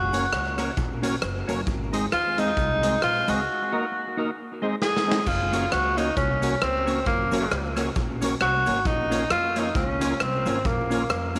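Upbeat and bouncy, this ska excerpt at 134 BPM swings along as a roomy tenor saxophone with light vibrato and tape echo carries the melody over woody pizzicato upright bass, a dark, clean, fingered electric guitar also treated with tape echo, fat, lightly overdriven tonewheel organ stabs with key click and slow rotary speaker sitting in the background, a gritty, punchy garage drum kit up front that plays a fill at 4.8 s, and a very quiet, grainy cabasa, the whole blend sitting in a moderate echo chamber reverb.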